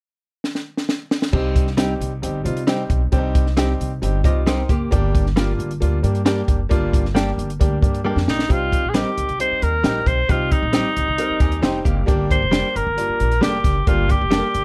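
Driving and urgent, this cut from a longer uptempo 1960s-style soul piece in C minor at 134 BPM opens with a fill on a dry, punchy compact cocktail drum kit before a brilliant grand piano, a woody, thumpy pizzicato upright bass and clean, compressed electric guitar stabs with subtle chorus arrive over Cm and Gm, a dark hollow-body archtop guitar adds brief riffs alongside the piano fills, and an edgy, forceful alto saxophone with light vibrato takes the melody up front from 8.3 seconds in a dark production with light reverb.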